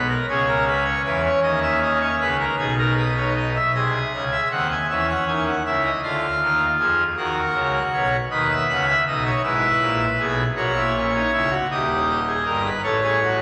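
A pipe organ on full registration plays alone from the first moment, its bright mixtures giving a majestic, brilliant sound with romantic voicing, sitting up front in a wet church reverb that lingers for 2.7 seconds. This stately yet lively three-part fugue in a baroque style moves in a straight 6/8, spanning from a deep C#1 up to G#5. After a short opening, a new section begins at 3.7 seconds, its harmony passing through chords such as C#m, D#m and B before the fragment, cut from a longer piece, ends on an A chord.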